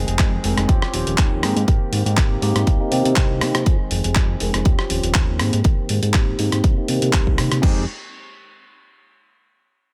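A fat, detuned analog bass opens this filtered disco house excerpt together with a clean, direct-recorded electric guitar riff, both pumping against the sidechain and muffled by a low-pass filter as a filter sweep runs across the bass from 0.0 to 7.6 seconds. Within a fraction of a second a gritty, sampler-style soul kit of handclaps, hi-hat, rim click and crash cymbal comes in, joined by a punchy, tape-tinged electronic kick that sits up front, while a bell-like tine electric piano adds bright chords through a phaser. The groove moves at 121 BPM in 4/4 with a light swing on the sixteenths, giving it a sensual, loose-hipped feel in F minor. The harmony cycles through Fm7, Eb13, Abmaj9 and Cm7 before landing back on Fm7 at 7.6 seconds. The guitar stays tucked in the background beneath the thick, sustained bass and the compressed drums, and the whole mix is dry and close, with the parts dropping out just before 8 seconds.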